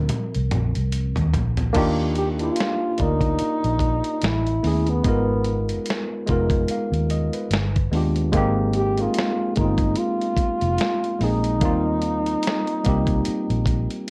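Relaxed and sensual, this 73 BPM neo-soul R&B cut in Eb major opens with a tine electric piano solo and a drum fill from a gritty, compressed sampler-style kit with a thumpy kick, over a dark, round, foam-muted fingered electric bass, before a distant, roomy French horn with classical vibrato takes the melody at 2.2 seconds against the worn, slightly out-of-tune piano chords, all under light reverb and the warble of old cassette tape.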